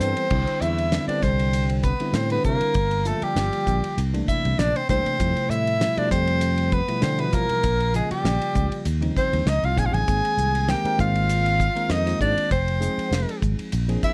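Bright and funky, this electric jazz fusion excerpt swings lightly in 4/4 as an up-front, close-miked soprano saxophone sings the vibrato-laden, scooped melody with a slapback echo, a mellow, distant tenor saxophone traces a soft second line in the background, a bell-like tine electric piano supplies clean accompaniment, a growly, punchy fretless bass sits forward, and a dry 70s drum kit with dark cymbals, a fat snare and a tight kick keeps time under a dark, lightly reverberant production, moving through rich chords from Cmaj9 to Fm7.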